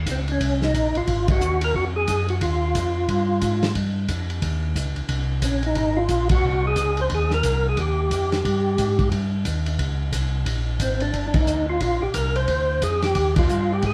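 A round, dark tonewheel organ bass line opens this swinging, greasy soul jazz organ trio excerpt at 179 BPM in Eb mixolydian, joined by a fat, percussive tonewheel organ melody with key click and third harmonic percussion and a muffled, lo-fi soul drum kit of hi-hat, kick, ride and snare with dark cymbals, both organs lightly overdriven through chorus vibrato and a slow rotary speaker, as band accents land at 1.2, 6.3 and 11.3 seconds over chords moving from Eb9 through Ab13 and Bb13 in a wet studio reverb.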